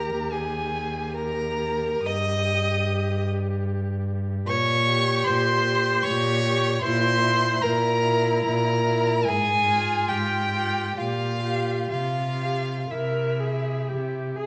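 Classical, a slow romantic string quartet movement in 3/4 with elastic rubato, elegiac and yearning: a singing first violin carries the melody with expressive vibrato and portamento, a full-bodied second violin shapes the second line, a smooth, even viola fills in the accompaniment, and an up-front cello anchors the bass, each part bowed by a single player in the lush reverb of a recital hall.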